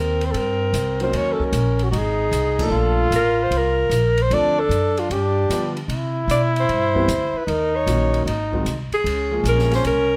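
A breathy alto saxophone carries the melody up front with subtone and vibrato over a bright trombone's scooped second line and a woody, thumpy pizzicato upright bass, joined at 0.2 seconds by a small-room jazz drum kit with dark cymbals and a boomy kick and at 1.0 seconds by a deep, open grand piano, in a smoky, cool small-group swing-and-bop passage at 152 BPM with a band accent at 2.5 seconds and light reverb.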